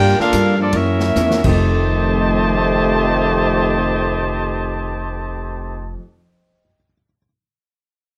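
A clear, up-front trumpet section carries the melody with vintage vibrato in this energetic, joyful big band swing fragment in F mixolydian, moving between 126 and 161 BPM and slowing over its opening moments. A mellow, tight trombone section plays the second line with soft attack, a woody, growly pizzicato upright bass anchors the bottom, and a very quiet, dark hollow-body electric guitar adds clean, compressed picked accompaniment. The acoustic drum kit, with its punchy kick, plays a fill at 1.2 s just before a warm concert grand piano enters in the background at 1.4 s, all set in a moderate club reverb with a dark production.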